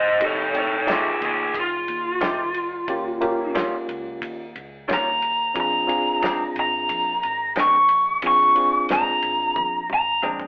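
Gritty and soulful, this straight-eighth soul blues at 90 BPM, cut from a longer piece, features an up-front overdriven lead guitar solo through a small cranked amp, set over a reedy electric piano with fast tremolo, bright, compressed stabs from a clean direct-recorded electric guitar, a round, foam-muted vintage bass in the background, and a damped 70s kit with a fat snare and dark cymbals that plays a fill from 9.6 seconds, heard as a band playing live in one room with a telephone-like sound and a large, wet studio reverb over chords moving from F9 to Eb9 to Bb9.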